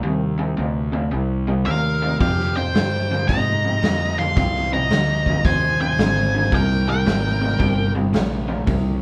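Brooding and heavy, this 9-second blues rock and southern rock power-trio excerpt swings at 111 BPM in C minor, with a bright, double-tracked overdriven garage guitar riff and a growly, up-front fuzz bass moving through Cm9, Fm9 and C7(omit3), joined at 1.7 seconds by a dark octave-fuzz lead melody up front and a smooth overdriven second lead line beneath it, while a gritty, punchy garage drum kit with a rolled-off top enters at 2.2 seconds, all heard as a band playing live in one room with moderate studio ambience.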